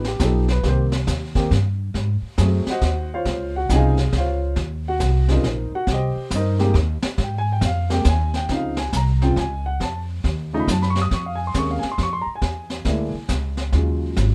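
Swinging in 3/4, this relaxed, sophisticated small-group jazz fragment sets an up-front upright piano with a woody tone and long sustain accompanying through rich extended chords against a thumpy pizzicato upright bass on gut strings and a distant, roomy vintage brush kit with a high-tuned snare, punchy kick and rolled-off top, heard in a dry, rough home-demo mix that shifts key at 8.5 seconds.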